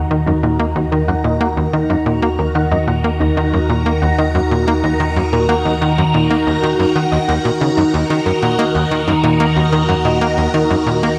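A steady, straight 4/4 pulse at 92 BPM drives this expansive, hypnotic piece of ambient, sequencer-driven space music in Eb minor, heard as a short cut from a longer work that rests on a single Eb minor chord throughout. Up front, a tight sequencer bass plays a punchy, nasal riff between Eb2 and Bb3, its sawtooth and square-wave tone shaped by a plucky filter with fast attack and decay and trailed by delay. Beneath it, an analog drone holds a low Eb2, mellow and warbling with pulse-width modulation, resonant edges, chorus and tube saturation. A phased string machine sustains bright, swirling vintage chords from Eb3 to Bb5, its slow attack and long release coloured by ensemble chorus and phaser. Entering at 0.3 seconds, a round, tine-like synth pluck with a dark FM character and a noise layer spins arpeggios between Eb4 and Gb5 through chorus and delay. A wet plate reverb with a 2.4-second decay wraps the whole texture in spacious depth.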